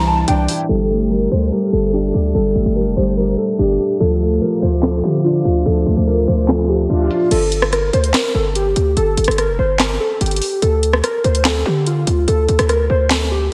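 A punchy, hard-hitting 808-style bass anchors this brooding, melancholic half-time hip hop and trap piece, beneath a detuned, nostalgic lo-fi synth keys melody with chorus and delay, a soft felt-muted upright piano with audible action noise and a very quiet warbling tape-like pad that both stop at 7.3 seconds, and a trap drum kit with a sharp snare, bright hats and vintage 12-bit sampler grit, set in a dreamy mix soaked in lush hall reverb.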